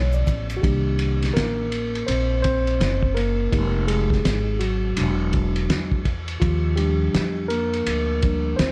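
A mellow tine electric piano takes the lead, playing a clean solo from 0.6 seconds through to the end of this short cut from a longer jazz-hop piece. It moves over a cool, mellow progression that opens on a rootless G7 and passes through Cm7, Fm7 and E9 before settling on Ebmaj9. Underneath, a pizzicato upright bass with woody, thumpy gut strings sits up front, while a cloth-damped drum kit adds a muffled, gritty pulse with a fat snare, tight kick, dark cymbals on hi-hat and ride, and a rolled-off top end. A tube shaker and congas sit in the background for a brief moment at the very start. The groove moves at an unhurried 83 BPM in 4/4 with a gentle swing on the sixteenths, and the dark, warm production places it all in a small, intimate room.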